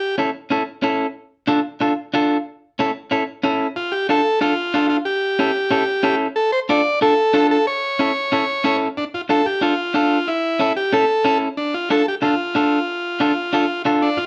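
Latin music cut from a longer piece, passionate and driving, with a buzzy, overdriven vintage combo organ up front carrying the melody: it sounds briefly at the start, then returns at 3.8 seconds over a picked, compressed, slightly broken-up electric guitar that plays the accompaniment from 0.2 seconds, the pair recorded as a band playing live in one room and bathed in wet studio reverb.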